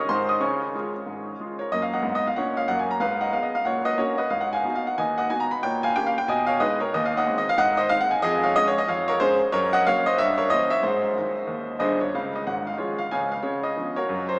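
A clear, intimate grand piano carries this swinging, exuberant stride jazz on its own, its action noise audible and its natural tone sitting up front as it spans G1 to Eb6 at a brisk 184 BPM in 4/4 with swung eighths. The harmony starts in F# major, passing through chords like G#m6 and Gdim/Bb, before shifting to Db major at 6.9 s and closing on Db7 at 13.4 s. The piece is heard through a small-speaker sound and a long cathedral reverb that places the piano in a vast, echoing space, and this short cut is lifted from a longer performance.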